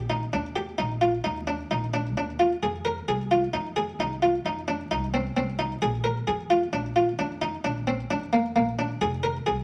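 A woody, pizzicato upright bass opens this restless, pensive piece of contemporary chamber music, and a muted, lute-like buff-stop harpsichord joins almost at once with close-miked, up-front arpeggios. In F dorian at 131 BPM with a straight 7/4 pulse, the fragment moves from Ebmaj7 through F7 and Bb before settling on Fm. A wet studio reverb and vinyl crackle colour the sound.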